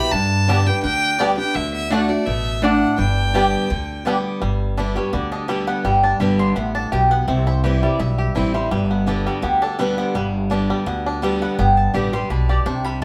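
Lively, virtuosic bluegrass, played live by a band in one room with moderate studio reverb, opens with a dark, bowed fiddle melody with light vibrato up front, shadowed by the nasal, metallic slide line of a fingerpicked lap resonator guitar until 4.0 seconds. Underneath, a growly pizzicato upright bass and a boxy, freshly strung parlour acoustic guitar sit up front, while a twangy, percussive banjo adds arpeggios and a mandolin punctuates with stabs. At 4.4 seconds the mandolin takes a solo, its picked double strings ringing woody over the bass, guitar and banjo.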